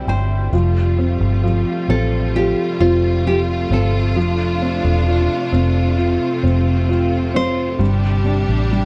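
A heartfelt, emotional pop ballad excerpt with a dry, close 1970s-style small-room sound, opening with a brief fill on a soft, boxy felt-muted upright piano whose action noise stays audible as it accompanies, while a lush, bowed string section holds smooth sustained chords, a dark, round, foam-muted electric bass sits punchy and up front, and a full-bodied, fingerpicked nylon-string guitar with a deep classical tone carries the melody from 0.1 seconds.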